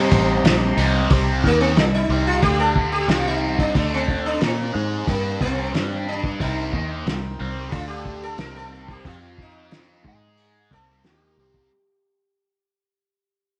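A bright, buzzing sitar with slapback echo takes a shimmering solo from 1.1 s across this dark, mysterious psychedelic rock fragment, over a biting, double-tracked overdriven guitar riff with phaser, a round fingered electric bass, a muffled, cloth-damped drum kit with a fat snare and tight kick, and a reedy pedal harmonium that breathes sustained chords in the background before dropping out and returning at 6.4 s, all set in an echo-chamber reverb as the piece fades out.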